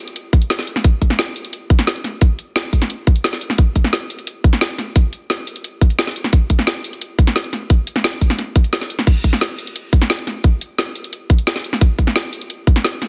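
Dreamy and rolling, this drum and bass excerpt moves at 175 BPM in a straight 4/4, built from a layered, up-front electronic kit whose woody snare, bright hi-hats and crash cymbal run from 0.1 to 13.1 seconds alongside a tight electronic kick that sits louder in the mix. Both drum parts have a close, small-room character, and a brief break arrives at 8.7 seconds. The dry, dense master is heavily limited in a modern style.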